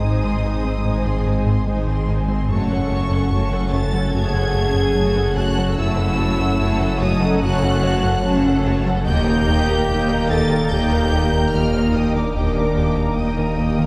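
Set in a straight 4/4 at 73 BPM, this excerpt of a relentless, futuristic hybrid orchestral and electronic film score moves through G#, F#m and then D# at 9.1 seconds, driven by a round, nasal analog bass riff. Warm bowed violins carry a high vibrato melody over an expressive, soft-attack second violin line, with rich violas in accompaniment, while clear French horns, very quiet mellow trombones and a dark, detuned sawtooth pad with chorus hold sustained chords beneath. Cellos, double basses and a deep sine sub bass anchor the low end, all heard from further back in a concert hall with a wet reverb.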